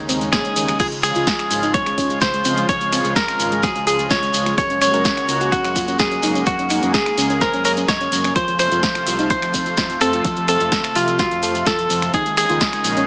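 A straight 4/4 progressive house pulse at 127 BPM in Db major drives this expansive, euphoric excerpt, with an overdriven electronic kick arriving at 0.3 s beneath a deep house kit of finger snaps, metallic hats, punchy snare and crash, while a grainy shekere sits in the background and a faint electronic swell opens the first 0.8 s. Up front, a bright, twangy clean electric guitar carries the melody through tape echo, shadowed by a soft, round pluck on a second line, while another dark pluck with 12-bit sampler grit runs arpeggios over a lush, warbling unison pad and a fat, detuned analog bass, all three pumping to the sidechain. The chords move from Absus4 through Db, Gbadd9 and F, and a moderate digital room reverb and small-speaker tone give the mix a compact, boxy sheen.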